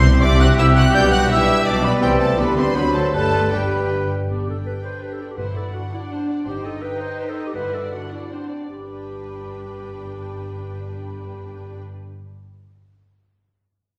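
Cheerful and lively, this quick classical-period movement for symphony orchestra in G major moves in 3/4 at 150-170 BPM with a rubato feel, slowing down between 5.9 and 8.7 seconds before settling on G. Violins carry a smooth, vibrato-rich melody over a second violin line, a mellow clarinet, lush violas and focused cellos and double basses, while a distant, hollow flute, a close-miked oboe and a soft-attacked bassoon add background colour until 4.1 seconds. Dark horns hold sustained chords and a trumpet section adds stabs in that same opening stretch, all bathed in the reverb of a recital hall in this excerpt from a longer piece.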